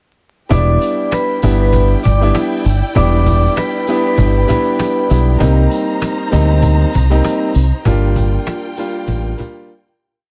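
This is a moody, dark boom-bap hip-hop piece in E minor at 98 BPM, with a swung 16th-note feel and a bed of vinyl crackle beneath it. A deep dub fingered electric bass sits up front with a round, amped tone, playing a looped line with chromatic approach notes. In the background, a cajon adds a sparse, woody beat with faint layered snares and quarter-note hats, joined by close, dry sleigh bells jingling on eighths. An intimate upright piano plays chopped chords with audible action noise and long sustain, repeated like a sampled loop, over a smooth-topped bowed string pad with vibrato and portamento. A vintage vibraphone with medium hard mallets carries a short, ringing melody doubled in octaves, with slow motor vibrato and a band-limited sound, until 5.4 seconds. The harmony moves from Em7 to Cm7 and then Gm7 as the track fades out from 7.9 seconds, ending in a brief break where the strings linger until 10.3 seconds.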